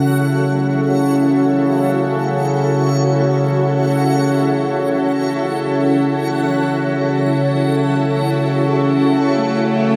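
A vintage analog drone sits up front on a sustained C#3, its sawtooth and pulse-wave tones warbling and evolving under chorus with a slow attack and long release. This short cut from a longer dark ambient piece moves in free time in F# minor, tuned to A4 = 443 Hz, and carries a desolate, dark mood over a single F#5 chord. Above the drone, a bright granular cloud pad holds sustained chords between E4 and C#5, its detuned unison of sine and sawtooth tones blurred and cloudy in its own reverb. Alongside both, a quieter backwards swelling texture spreads from C#4 to F#5, reversed and dreamy, with triangle tones and granular grains bathed in built-in reverb. At 9.3 seconds a single bowed cello enters on A3, dark and expressive with vibrato and portamento. The whole recording is set in a wet cathedral reverb with a 6.1-second decay.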